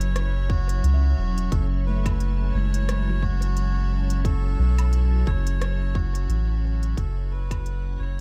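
Ambient dub at 88 BPM in F# minor, spacious and meditative, where a reedy, breathy melodica melody drifts through dub echo over an organ-like pad holding F#m7 with chorus and reverb, a deep, round sub bass sits up front, crisp-hatted electronic drums with rim click and woodblock trail echoes beside a tight, tape-warm kick, and a ringing handpan plays arpeggios through analog delay in the background from 0.9 to 6.2 seconds, all in an echo-heavy digital ambience before a fade-out from 5.2 seconds.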